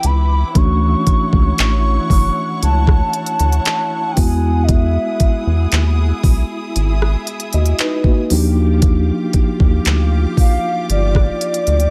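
Dry, this dreamy, romantic contemporary R&B excerpt at 58 BPM sets a hollow, woody clarinet-like synth lead with chorus and vibrato over a mellow tine electric piano, a dark, distant studio string section, a rubbery, bouncy square bass up front, and a smooth, tape-tinged drum kit of knocking kick, hi-hat, handclaps and rim click, all moving through lush major-ninth chords.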